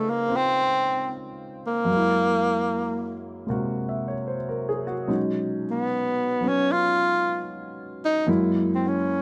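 Romantic and tender, this short jazz passage is cut from a longer piece and swings gently in four, with a tenor saxophone carrying the melody over a concert grand piano from start to finish. The saxophone sits up front with a clear, present tone shaped by vibrato and breathy subtone, while the piano accompanies with an intimate, natural sound, deep in the bass and touched by audible action noise. Light reverb surrounds the duo as the harmony moves through lush chords such as Dbmaj7, Gb9 and B6.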